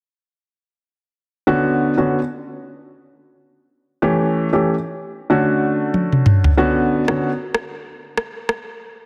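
A lush hall reverb, about 2.0 s long, surrounds this dense, heavily limited modern master, a brief cut from a longer afrobeats piece in B minor at 94 BPM in 4/4, with a 58% swing on the sixteenths. The mood is mellow and hypnotic. A dark baby grand piano opens the passage at 1.5 s as accompaniment, sitting up front with an intimate, natural tone, short sustain and audible action noise as it moves through Bmadd9, A7 and Dmaj7 before returning to Bmadd9. At 5.9 s an electronic, tape-warm afro-pop drum kit arrives, also close in the mix, and plays a fill of rim clicks and toms. The piano drops out at 7.3 s, leaving the produced drums to carry the last moments.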